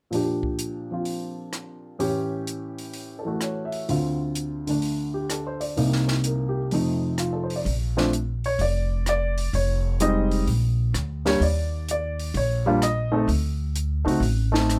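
A dark, mellow baby grand piano opens this playful, sophisticated jazz piano trio excerpt, carrying the melody up front alongside a compact cocktail drum kit of hi-hat, rim click, high-tuned snare and punchy kick, which sits lower in the mix. The swung groove moves through a sophisticated progression, from Bb6 and A7 through Dm7, Cm7 and F7. At 7.7 seconds a woody, thumpy upright bass joins, plucked pizzicato on gut strings with a dark, up-front presence. The second passage turns to richer colours such as Fm9, Ebmaj7(no3) and D7(no3), with the piano's short sustain keeping its lines natural. Close, detailed microphones and little reverb give the whole trio a dry, intimate sound that feels cut from a longer performance.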